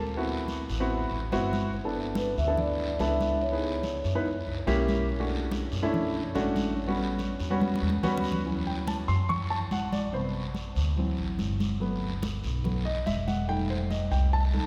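An intimate baby grand piano sits up front, its natural tone carrying audible action noise as it comps through rich extended chords and then takes a solo from 8.5 seconds to the end of this lively, sophisticated Afro-Cuban jazz cut in D major at 143 BPM. Beneath it, a woody, dark upright bass thumps out pizzicato lines on gut strings. Thick-skinned, damped congas sit close, dry and in the background, while a raspy guiro scrapes with a live-room air. A mellow vibraphone played with soft mallets and the motor off adds a brief metallic, ringing melody from 2.2 seconds, and a fill at 7.6 seconds leads into the piano's solo. The whole piece is bathed in a cathedral-like reverb that suggests a church or concert hall, with a faint mains hum underneath.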